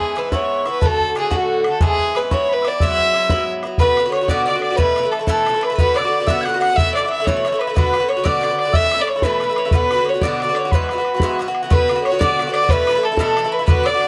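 Bright and lively, this short Celtic jig in 6/8 moves with a straight, buoyant feel. A bowed fiddle carries the melody up front, its gut-string tone reedy with a smooth top and set in plate reverb. Above it, a wooden whistle plays a second line in the background, airy and tongued with a breathy chiff, vibrato and an unsteady pitch. An Irish bouzouki picks the accompaniment on metallic double strings, while a tight, damped bodhran sits close and prominent. At 3.8 seconds a very quiet mandolin joins with a round, picked second line as the harmony shifts from E and D toward alternating Bm and Asus2 chords, all captured with close, detailed microphones and light room reverb.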